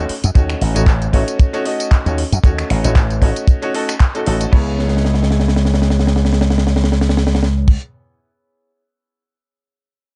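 A punchy, up-front slap bass run through an envelope filter drives this sleek, groovy nu-disco excerpt at 115 BPM in C# minor with a light swing, joined by a brilliant concert grand piano through analog delay, a tight, dry acoustic funk kit with bright cymbals and a high-tuned snare that plays a fill from 4.8 seconds, and an overdriven, layered electronic house kit of finger snaps, handclaps, hi-hat and tambourine that carries the opening drop until 4.5 seconds, when the harmony moves from D#m7b5 to C#m7, all in a dark, small-room production.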